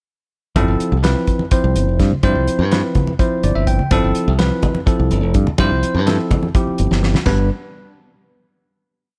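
A straight 7/8 groove at 250 BPM in eighths drives this short, soaring and bright electric jazz fusion piece in G mixolydian, with a dry, up-front 70s drum kit of fat snare, tight kick and dark cymbals, a punchy fingered electric bass playing a syncopated riff, a bell-like tine electric piano comping funk chord rhythms in drop2 voicings over G13sus4 with a fill at 3.2 seconds, low-tuned congas with soft hands in the background, and a drum fill at 6.9 seconds leading to a final G chord at 7.3 seconds in light studio reverb.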